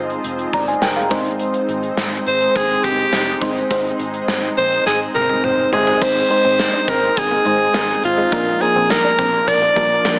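A raspy, up-front alto saxophone takes the melody from 2.3 seconds in this uplifting, glossy 1980s-style pop excerpt at 104 BPM, riding over a lush FM electric piano with chorus, a shimmering background pad, a gated drum kit with a punchy kick and a fill at 4.9 seconds, a round, dark muted bass, and a very quiet clean electric guitar riff that enters at 6.0 seconds, all through a moderate plate reverb with a small-speaker sound.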